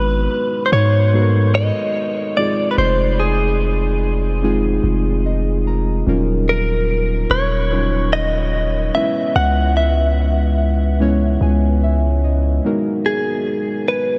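A long, deep 808-style bass with a mellow sine tone anchors this moody, sensual contemporary R&B excerpt at 73 BPM until 12.6 seconds, while a clean, picked, direct-recorded electric guitar carries the melody through a diffuse ambient delay over muted, felt-like synth keys with a dark, chorused body that add fills at 4.8 and 11.0 seconds, all bathed in a huge, dreamy reverb as the chords move from Abm9 through Fm7, Ebm9 and Dbm7 and back.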